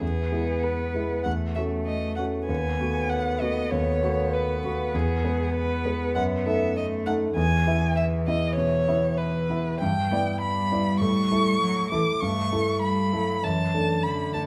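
A violin, cello and concert grand piano enter together at the start of this quick, graceful classical-period movement for piano trio, played at 99 BPM in 4/4 with a supple rubato and set in E major. The dark-toned violin carries the melody up front, its soft attack, vibrato, expressive portamento and smooth upper register giving the cheerful line a tender edge. Beneath it, the rich cello sings a second line in its low register with even, close-miked bowing and vibrato of its own, while the warm, intimate piano supplies the accompaniment with deep bass and audible, natural action noise. The harmony moves from E through F#m7/E and B7/D# before passing through Em7/G, A and A7/G and arriving on D/F# near 13.4 seconds, as though the music is heading somewhere new when this section of a longer piece breaks off. A moderate recital hall reverb places the trio in a natural, lifelike space, and the violin falls silent at 14.4 seconds, just before the cello and piano finish at 14.5.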